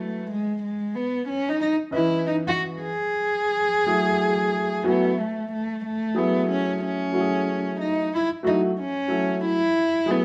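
A relaxed 92 BPM groove in 4/4 swings its sixteenths at 62%, setting a mellow, smoky hip hop mood in F# dorian. A dark, bowed cello carries the melody from G#3 to G#4 for the whole 10.2 seconds, played sul tasto by a single player with a soft attack, light vibrato and a smooth top that feels intimate and close. Beside it, a woody upright piano accompanies from D#3 to G#5, its polished tone and long sustain sitting up front with the cello. The harmony moves from C#m9 to F#m9, and the music falls into two matching passages, the second beginning at 5.5 seconds, with the piano adding a fill from 4.5 to 5.5 seconds. Both players share one stone room with a wet reverb, giving this short fragment of a longer piece the sound of a live performance.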